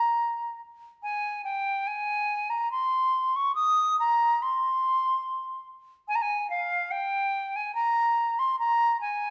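A moderate recital-hall reverb with a 1.5-second decay surrounds a single silver concert flute, heard up front with a pure, metallic tone, crisp attacks and expressive vibrato. This brief, grave and introspective extract from a longer baroque-style fantasia for unaccompanied flute moves in a rubato triple metre. The solo line stays in the instrument's upper register, between F5 and Eb6, across its full 9.3 seconds.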